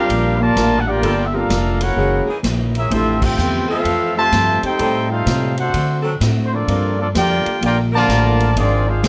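A swung 4/4 pulse from a big-band drum kit with punchy kick and ride cymbal drives this brassy big band jazz excerpt, where an up-front trumpet section with light vibrato carries the melody over a clear trombone second line, soft-attack saxophone chords, woody pizzicato upright bass, a background concert grand piano and bright picked steel-string acoustic guitar, with a band accent at 3.1 s in a moderate club reverb.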